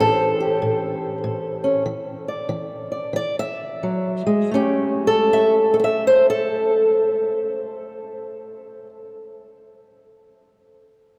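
A fingerpicked old ladder-braced acoustic guitar plays alone and up front in this soulful, swaggering fragment of acoustic country blues, its dark, woody, boxy tone from old strings swinging over A7 and E7 chords, slowing down through the first 4.5 seconds, and ringing into a vast, echoing cathedral reverb.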